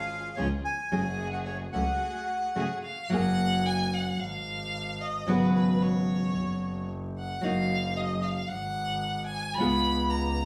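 A rubato 4/4 tango, passionate and melancholic, this section of a longer piece opens with a reedy, close-miked bandoneon melody and lush, woody string-section stabs until 2.8 s, over a biting, earthy bowed double bass and a fingerpicked nylon-string guitar with audible finger squeak, before a focused, distant bowed violin enters and carries a solo from 3.1 s, the band heard playing live in one room through a large, wet studio reverb.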